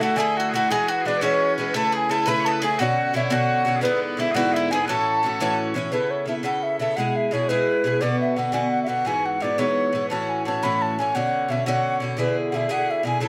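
Celtic folk jig in a lively, sunny 6/8, cut from a longer piece, with a tongued wooden baroque flute carrying the airy, straight-toned melody over an up-front Irish bouzouki picking warm, metallic double-string accompaniment throughout. For the opening phrase, a piercing, continuous set of bagpipes and a picked bowl-back mandolin with slapback echo, sitting in the background, add second lines before both drop out at 5.6 s. The flute and bouzouki then carry the repeated section alone to 13.3 s, in a moderate studio reverb.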